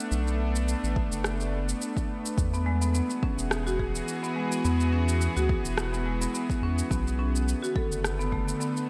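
A bright, string-like drone with a tense, ring-modulated edge opens this meditative organic downtempo piece at 106 BPM in B dorian, joined at once by a round, dark analog bass with sidechain pumping and a produced electronic shaker and rim click gently swung on the sixteenths. A deep electronic kick enters at 1.0 seconds, and at 2.5 seconds a woody marimba played with medium hard mallets adds delayed arpeggios as the harmony moves from Bm7 to Eadd9 and back. A lush hall reverb and bright 1980s-style digital production give the cut-down passage a warm, spacious glow.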